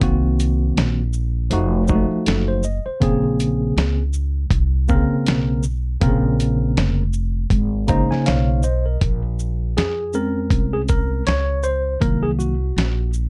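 A smoky, cool jazz-hop groove in Bb minor opens with a gritty, overdriven sampler-style drum kit, a thumpy kick and medium-tuned snare joined by hi-hat and shaker, alongside a woody pizzicato upright bass and a worn, slightly out-of-tune tine electric piano comping over Cm7b5, F7b9 and Bbm9 chords. The 80 BPM pulse carries a lazy 16th-note swing, all three parts sitting up front in a dark, warm production with light reverb. The electric piano adds a fill at 7.5 seconds and then takes a short solo from 9.0 seconds until this excerpt is cut off.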